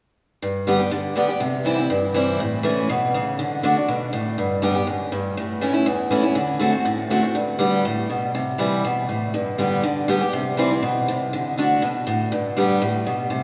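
Virtuosic and driving, this bluegrass fragment in G major races along at 242 BPM in a straight 4/4, cut from a longer piece. A lone picked steel-string acoustic guitar, bright with fresh strings and placed up front, carries the whole thing from 0.4 to 13.4 seconds, ranging from E2 to G4 over a progression that moves through G, C, A, D and D7 before landing on G. The sound is drenched in a cathedral reverb with a long 4.8-second tail, giving the close, crisp picking a vast, echoing halo.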